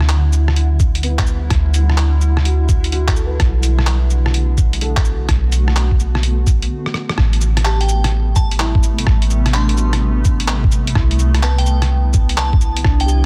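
Future garage with a ghostly, wistful mood and a swung 16th-note feel, opening on a muffled, tape-warm sampler kit of hi-hat, cabasa, handclaps, rim click and a soft-clipped snare, a soft, round 808-style bass up front, a blurred, evolving granular pad, and a felt-muted upright piano sitting in the background with 12-bit grit and dub echo, all three pumping against the sidechain. A thumpy, compressed kick joins at 0.8 s, and after a stop and drum fill closing on a band accent at 7.1 s, a crystalline FM synth bell enters high at 7.7 s, warbling through chorus, tremolo and dub echo. The dense, heavily limited master sits in a digital ambience, and the passage is cut from a longer piece.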